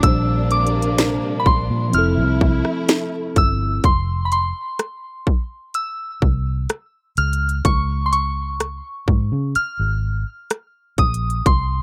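A slow, straight 4/4 pulse at 63 BPM from an electronic trap drum kit sets the pace, with a hard-clipped kick, sharp snare, rim click and crisp hi-hats sitting up front in this tender, romantic contemporary R&B excerpt in F major. Beneath it, a vintage muted fingered electric bass plays throughout, dark, round and punchy with a foam-muted, amped tone. A soft FM synth bell carries the melody in a high register, pure and gentle with a fast attack and decaying notes, colored by chorus and digital delay. For the opening 3.9 seconds a mellow tine electric piano with analog chorus adds harmony, joined until 3.8 seconds by a bowed studio string section, expressive with vibrato and portamento, over chords moving from Bb69 to Fmaj7. After 3.8 seconds the arrangement thins to bell, bass and drums as the harmony shifts to F5 and then Db, all in a dry, close-sounding space.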